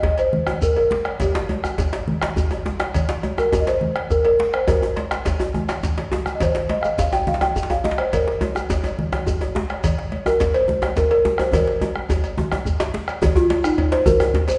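Bathed in a reverberant hall with softened highs, this earthy, powerful West African drum ensemble excerpt in 12/8 puts a woody, full balafon up front over a round bombo, bright, thin-skinned congas, a metallic cowbell and a grainy, mellow shekere, with one tight, cracking djembe in the background and a second djembe with metal rattles, played with soft hands, up front, as the piece gradually speeds up and drum fills break out at 5.8 and 11.5 seconds.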